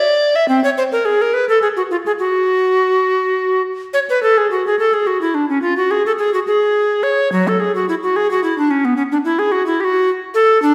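Classical baroque-style fantasia for a lone bass recorder, dance-like and flowing in a lilting 6/8 with a supple rubato feel, heard as a short passage cut from a longer piece. The bright, airy wooden tone sits close and up front, with vibrato and tongued attacks that let each note's chiff speak clearly. A wet recital-hall reverb surrounds the instrument, and a new section begins at 4.0 s, carrying the line through to 10.7 s.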